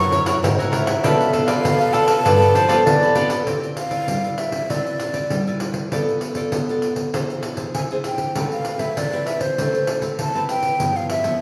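Samba and choro at 98 BPM in a straight 4/4, festive and sunny, with a breathy, hollow concert flute carrying the melody over a bright fingerpicked nylon-string guitar and a jingly, up-front pandeiro played with soft hands. A crisp picked cavaquinho and a second nylon-string guitar on the bass line support the opening until about 3.5 s, while a soft-attack clarinet adds a brief second line from 2.5 s, before the music settles into C major with rich chords such as Cmaj9, Eaug7 and Am9. The sound is set in a reverberant recital hall, and the piece is cut from a longer performance.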